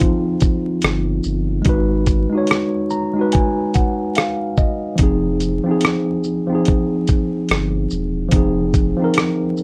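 A worn, slightly out-of-tune tine electric piano and a gritty, compressed sampler-style soul kit with a thumpy kick, hi-hat, rim click and shaker open this hazy, melancholic lo-fi hip hop fragment at 72 BPM, swung on the sixteenths in F minor. A deep, saturated sub bass with a thick triangle tone joins at 0.8 s under mellow Fm7 and Abm7 chords. The electric piano, softened by cassette tape, a low-pass filter and plate reverb, plays a fill from 2.5 to 5.0 s over a bed of vinyl crackle.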